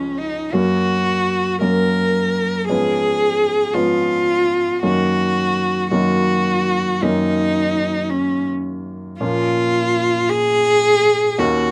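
Tender and lyrical, this short romantic classical passage for cello and grand piano moves in a rubato 12/8 at 55 BPM, with a single bowed cello singing the melody in a rich, focused voice with vibrato while the clear, polished baby grand supplies accompaniment beneath it, the cello close and both instruments up front in a moderate studio reverb as the harmony drifts through Db, Gb, Db7/Ab and Gb6 before turning to A#m at 9.2 seconds.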